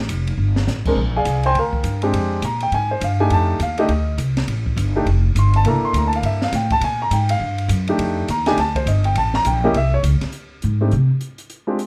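Relaxed and sophisticated, this fragment of a longer small-group swing and bop piece moves at a brisk 205 BPM in 4/4 with a lilting swing, centred on F mixolydian. A woody, growly pizzicato upright bass sits up front and takes a short solo from 10.3 seconds, while an open acoustic drum kit recorded in a studio room, with a high-tuned snare, boomy kick, ride, hi-hat and crash, opens with a fill at 0.4 seconds. A warm grand piano, also up front, enters at 0.9 seconds with rich extended chords such as Bb13, F13 and C13, moving to an Abmaj7#11 near the end, all under light reverb.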